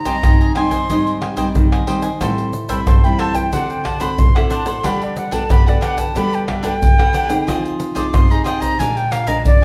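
Bittersweet and yearning, this short excerpt from a longer samba and choro piece moves at 91 BPM in a straight 4/4, with the band playing live together in one room under a wet, large studio reverb. A silver concert flute carries the melody as a solo across the whole passage, its airy, metallic tone marked by vibrato, tongued notes and an unsteady quality. Beneath it, a bright, crisp cavaquinho picks out accompaniment while a classical nylon-string guitar adds a fingerpicked, warm foundation lower down. Entering at 0.1 seconds, the percussion of egg shaker, surdo, pandeiro and tamborim sits close and up front, anchored by the deep surdo. The harmony drifts from Abmaj7 through Am7, D7 and Gmaj9 before turning to Fm7 and Bb7, feeding the wistful, unresolved feeling.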